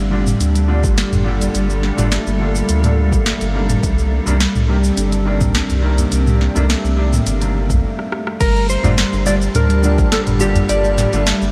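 Organic downtempo in G minor at 105 BPM, this meditative, hypnotic excerpt opens on a Gmadd9 chord. A cloudy, detuned granular pad hovers in the background with sidechain pumping, while a ringing steel handpan plays arpeggios through analog delay. A round sine sub bass sits up front, and a felt-muted upright piano adds intimate accompaniment. A produced afro-pop kit with a sharp snare and smooth hats, a layered electronic kick and a small, dry udu keep a straight 4/4 pulse. After a stop and a drum fill, a clean lap steel guitar enters at 8.4 seconds with a fingered slide melody, lush chorus and delay, and the whole mix is soaked in a huge, dreamy reverb.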